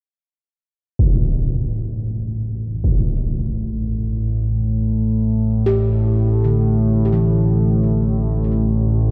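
Unfolding in free time, this dark ambient drone piece, cut from a longer work, sets a desolate, dark mood over an A5 chord. A huge, bright impact, filtered low and placed up front, strikes at 1.0 seconds and rings until 3.0 seconds. Just after, at 1.5 seconds, an analog drone rises on a slow attack and holds for the rest of the piece, its vintage sawtooth and pulse-wave tones warbling and evolving through pulse-width modulation and chorus, sustained with a long release. From 5.7 seconds, gamelan-type bossed gongs add arpeggios in a metallic, bronze, round voice, their beating tones sitting mid-forward and trailed by delay. A cavernous cathedral reverb with a long tail bathes the whole recording, deepening its sense of isolation.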